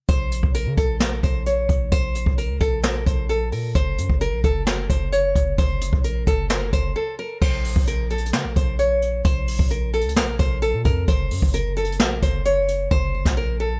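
A bright, fingerpicked nylon-string guitar with audible finger squeak and a touch of delay carries the melody up front in this menacing, melancholic hip hop and trap excerpt at 131 BPM in a half-time feel, over a heavy, decaying sine-based 808-style bass with a fast attack and a noise layer and a roomy jazz brush kit with dark cymbals and a punchy kick, pausing for a brief break at 7.0 seconds before the hi-hats drop out at 12.9 seconds.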